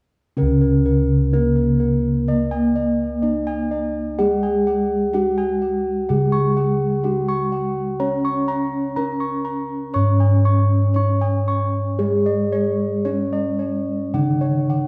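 A ceremonial, shimmering Javanese gamelan passage, cut from a longer piece, sets all four parts going together at 0.4 s over an unhurried pulse with uneven beats. A close, dry-sounding bronze metallophone carries the full, mellow melody, struck with padded disc mallets. A second metallophone in paired tuning gives the lower accompaniment an airy shimmer of beating tones. Among the bossed gongs, dark, smooth arpeggios ring from padded beaters above a round, bright bass line, all of it blooming into a reverberant recital-hall space until the passage ends at 14.9 s.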